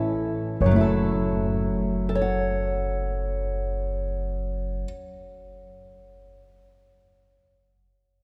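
Reflective and melancholic, this brief acoustic folk-pop ballad in free time and F# minor opens at 0.0 s with a dark, fingerpicked, ladder-braced acoustic guitar on old strings, up front. A thumpy, woody pizzicato upright bass and an intimate grand piano, set in the background with audible action noise and a C#5 melody, join over an F#m7 chord from 0.6 to 4.8 s, all bathed in the long, wet reverb of a church or concert hall.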